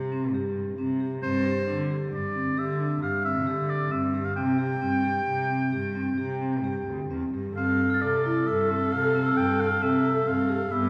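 A ringing vibraphone played with medium mallets spins arpeggios over a close, sul tasto cello bass from the start, and at 1.2 seconds a solo oboe joins with a classical-style melody and light vibrato in this shimmering, hopeful chamber piece in 7/4 at 134 BPM. At 7.6 seconds a dark, woody viola adds a second line, and from 7.9 seconds a mellow glockenspiel with rubber mallets sits briefly in the background. The music, cut from a longer piece, rings out in a wet concert hall reverb.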